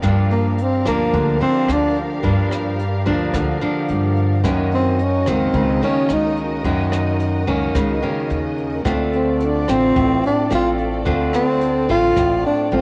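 A breathy, dark tenor saxophone carries a close-miked, whispered solo with vibrato and scooped notes from 0.3 seconds, up front over fingerpicked, full-bodied nylon-string guitar, a woody, growly pizzicato upright bass, lush distant bowed strings and a jazz brush kit with a boomy kick set in the background, in this relaxed, breezy 109 BPM bossa nova excerpt moving through Gm7, Gb6 and Dm7, recorded at home on cassette with moderate spring reverb and a faint mains hum.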